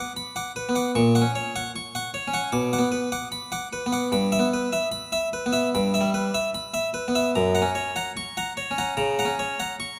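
A classical, baroque-style suite movement for solo harpsichord unfolds in this short cut from a longer piece, carrying an introspective, grave mood. The tempo sits around 75 BPM in 4/4, though the playing is rubato and breathes freely. The harpsichord is a bright, plucked French-style instrument on a single set of strings, spanning F#2 to D6 and placed up front. Its harmony moves from B minor through F#/A# and back to Bm, reaching Em/G at 4.1 seconds before settling on F# at 7.3 seconds. Close, detailed microphones capture the instrument within a moderate concert hall reverb that lingers for about 2.0 seconds, giving the solo line a sense of space around its bright, plucked attack.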